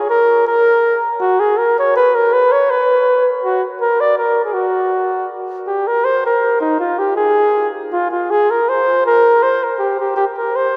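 A mellow flugelhorn plays alone and up front in this bouncy, festive alpine folk excerpt, its classical-style line moving in a lilting 3/4 at 161 BPM with a light swing on the eighths. The horn sits in a vast, echoing space, wrapped in a wet cathedral reverb with a long 5.5-second tail. The short passage moves from its opening section into a contrasting one at 5.7 seconds before it is cut off at 10.8 seconds.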